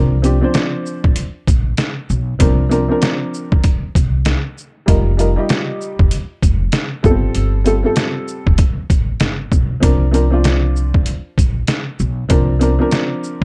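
This jazz-hop excerpt sits at 97 BPM in 4/4, with a swung sixteenth-note feel and a cool, smoky mood in C dorian. A slightly detuned upright piano carries the accompaniment, its tone mellow, worn and boxy, with short sustain and audible action noise that makes it feel intimate and up front. Beneath it, a pizzicato upright bass on steel strings gives a woody, warm low end, both parts starting at 0.0 seconds. At 0.2 seconds a sampler-style trip hop kit enters, pitched down, compressed and overdriven into a gritty sound, with a thumpy kick, a medium-tuned snare, hi-hat and shaker pushed to the front of the mix. The harmony moves through suspended ninth chords, from C9sus4 to F9sus4 and G9sus4 before returning to C9sus4, all set in a small room with a dark, warm production.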